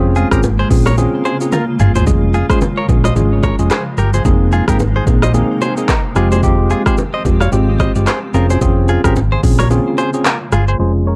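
A clean tine electric piano, a blurred, evolving granular pad with built-in reverb in the background, and a round, punchy hollow-body bass open this sultry, mellow afrobeats excerpt at 110 BPM, swung on the sixteenths and moving through Bbm7/F, Db/F, Abadd9/F and Fmadd9. A twangy, scooped clean guitar riff with warbly pitch drift and digital delay joins at 0.2 seconds alongside an up-front deep house kit of deep kick, smooth hats, handclaps, rim click, shaker and toms, which plays a fill at 1.5 seconds, while very quiet bongos and congas from a small room sit underneath. The production is dark and low-pass filtered, set in a digital ambience.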